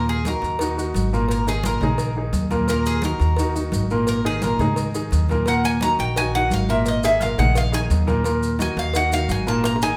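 A straight, driving salsa groove at 173 BPM in Eb minor carries a passionate Cuban tres solo, its picked, metallic double strings up front over a clear, polished baby grand piano, a woody, thumpy pizzicato upright bass, ringing congas in the background, very quiet tight high-tuned cowbell and bongos, and grainy, saturated maracas, all alternating Ebm and Absus2 in a wet large studio reverb as the band plays live together, with a drum fill at 9.6 seconds closing this cut from a longer piece.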